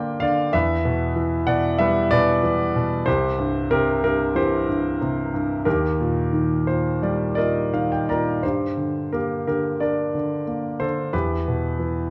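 Rubato phrasing stretches a 4/4 pulse that drifts between 83 and 98 BPM in this lyrical classical solo for concert grand piano, a brief cut from a longer piece. The mood is bittersweet and brooding, with harmony moving from G minor through E minor, C and E-flat before returning to G minor and E minor as the opening phrase comes back at 8.4 seconds. The piano carries the whole 12.1 seconds alone, spanning C2 to B-flat 5 at a tuning of A4 = 444 Hz, and a short fill between 6.3 and 8.4 seconds bridges the two statements. Its tone is clear and polished, placed up front with deep bass and an intimate presence in which the noise of the action can be heard. A moderate recital-hall reverb with a 1.7-second decay surrounds the instrument within a dark production.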